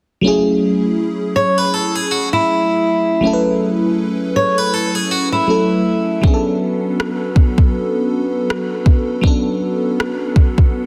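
A moody, longing contemporary R&B piece at 80 BPM in F# minor opens at 0.2 s on a dreamy, detuned FM electric piano with a soft pad layer, colored by chorus and phaser and resting on F#m7 over a swung 16th-note feel. From 1.4 s a fingerpicked steel-string acoustic guitar with fresh strings plays arpeggios through digital delay, and at 6.2 s the harmony moves to Bm7 as an ethereal glass harmonica holds sustained chords and a produced electronic drum kit enters with a soft kick, rim click and soft clipping on the snare. A lush hall reverb surrounds the dense, heavily limited master of this short cut from a longer piece.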